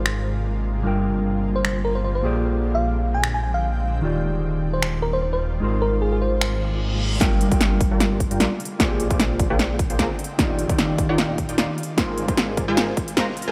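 A half-time future bass groove at 151 BPM in 4/4, with a light swing on the sixteenths, this bright, playful passage in Ab lydian is cut from a longer piece. Overdriven big-room drums carry finger snaps, crisp hats and a punchy snare up front under a filter sweep, while a thick, detuned saw bass with chorus anchors the low end and a shimmering, ethereal pad holds sustained chords behind, each pitched part pumping with the sidechain. A bell-like FM electric piano with chorus, tremolo and tape echo sings the sparkling melody until 6.6 seconds, as a dark, clean, fingered electric guitar with spring reverb and delay accompanies until 12.4 seconds. A reverse cymbal rises into the second half, where a punchy, full-bodied supersaw stab riff enters under a filter sweep alongside an overdriven electronic kick, turning the passage into a build-up with a drum fill. The chords cycle through Ab69, Gm7, Bb13 and Ebmaj9, lending the lush harmony its airy lift.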